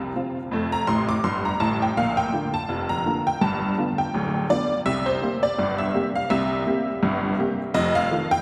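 Lightly swung sixteenths in a 2/4 bounce carry this jaunty, playful ragtime fragment, played solo on a detuned, jangly honky-tonk upright piano that sits up front yet rings out into a long cathedral reverb, with a quick fill at 0.9 seconds as the chords move from F through Bb, G7 and C7 to F7.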